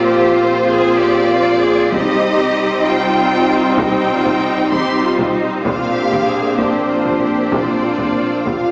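Heard from farther back in a wet scoring-stage reverb with a small-speaker quality, this heroic, epic orchestral film-score passage moves at 64 BPM in 6/8 over Bbadd9, Cm and back to Bbadd9. Lush violins with vibrato and a soft attack carry the melody while a focused second violin line sits in the background. Violas with portamento, close, even cellos and dark, woody double basses fill out the bowed strings alongside mellow sustained horn chords. At 1.9 s a band-limited taiko ensemble enters with hard sticks, and very quiet timpani with hard mallets sound until 2.8 s.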